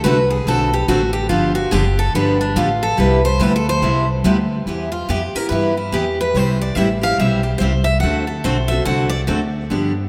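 Drenched in a long cathedral reverb, this short cut from a longer jazz manouche piece sounds as if it were played in a vast, echoing space, with playful, lively swing in 4/4. Two bright, freshly strung picked steel-string acoustic guitars sit up front: a full-bodied dreadnought carries a second line until 9.2 seconds while an auditorium-size guitar picks out the accompaniment, and a steel-string guitar solo runs from start to finish. Beneath them, a woody, thumpy pizzicato upright bass, also up front, grounds the harmony as the chords move from D7 and G7 to Cmaj9, then Em and C before returning to D7.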